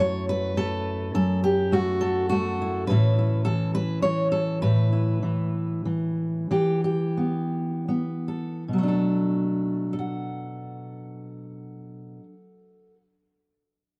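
A fingerpicked steel-string acoustic guitar opens this wistful, haunting solo folk fragment in three, its auditorium-bodied tone sitting up front in a dry, close 1970s-style studio sound as it moves from F#m7 to Aadd9, slows between 4.6 and 8.7 seconds through an Em chord, and arrives on Bm7 at 8.7 seconds before the guitar stops at 13.0 seconds.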